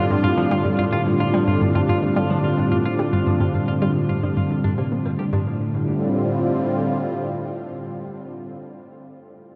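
A bright, airy resonant pad sweeps up front through sustained chorused chords over a round analog pluck riff, arpeggios from a clean, hollow-bodied electric guitar that fades out, and a bubbling stepped-filter texture in the background, all soaked in a vast, echoing reverb in this mysterious, hypnotic 109 BPM slice of sequencer-driven space music that moves from G7(no3) to G5 at 5.3 seconds, after which the pad carries on alone from 5.6 until 8.3 seconds.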